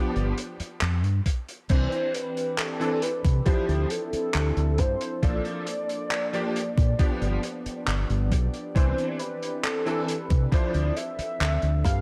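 Lightly reverberant and lo-fi, this woozy, dreamy vaporwave excerpt drifts at 68 BPM in C major, as a bright, clangy electric grand piano with ensemble chorus and tape echo opens at 0.0 seconds and drops out at 10.9 seconds, over a dark, round, tube-saturated fingered bass, a muffled vintage kit of crash, handclaps and hi-hat in gated reverb, and a thumpy up-front electronic kick, while a velvety, full-bodied synth lead with chorus, vibrato and tape echo carries the melody from 1.7 seconds and a warbling, nostalgic tape-like pad with chorus swells in beneath it from 2.1 seconds across chords such as G7, Cadd9, Dm9 and Bbmaj7.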